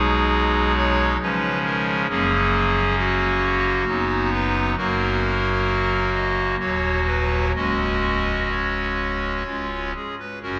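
Moving in a steady, straight triple metre at an unhurried pace, this brief, majestic chorale-style passage for pipe organ is cut from a longer piece. A single clarinet reed stop carries everything alone from the opening through 10.6 seconds, voiced in a romantic manner and spanning from deep bass notes up into the treble. Its tone is hollow and reedy, sitting up front in the sound while a long, wet cathedral reverb lets each chord hang and bloom in the space. The harmony moves reverently through a short progression, opening on G#m7/B, passing through C#, F#, B/F# and D#m, and settling on a C#sus4 that resolves to C# at 9.5 seconds. The effect is solemn and devotional, a stately fragment suspended in a vast, resonant room.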